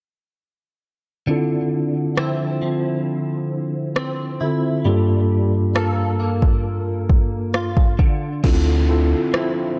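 Moody and longing, this slow contemporary R&B excerpt at 67 BPM in D minor opens at 1.3 seconds with a mellow tine electric piano moving from Dm9 to Gm9, alongside bright, twangy arpeggios from a clean, direct-recorded electric guitar coloured with ensemble chorus and tape echo. A smooth, electronic drum kit with a soft kick, rim click and crash sits up front, and after a brief chordless pause the rubbery, hollow square bass arrives at 8.4 seconds on a low D as an electronic downlifter falls beneath the return to Dm9. The production is dark and close, with little reverb.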